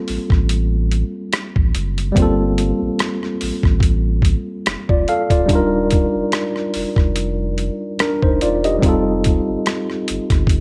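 A gritty, compressed sampler-style boom bap kit with a thumpy kick sits up front, carrying hi-hat and rim click at a smooth, late-night 72 BPM with a light sixteenth-note swing, while the whole short excerpt is wrapped in digital ambience. A worn, slightly out-of-tune tine electric piano, lightly overdriven as if through built-in speakers, accompanies upfront over Gm11, Ebmaj9 and F9 in G minor. A deep, thick saturated sub bass with a fast attack and sustained triangle tone anchors this neo-soul R&B groove from 0.1 seconds onward.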